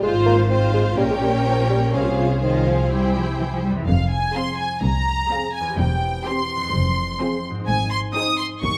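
Playful, whimsical cinematic film cue in F minor at 126 BPM, in a straight 4/4 feel with a sneaky, quirky mood, cut from a longer piece. A close, smooth violin section carries the melody over a more distant, expressive second violin line, while a viola section with portamento, a dark solo bassoon that stops at 3.4 s, and fingerpicked, ringing concert harp arpeggios fill the middle, grounded by a woody bowed double bass section and a lush cello section in the background. A roomy French horn section enters at 4.4 s with sustained chords in the background, and the ensemble sits in moderate scoring-stage reverb.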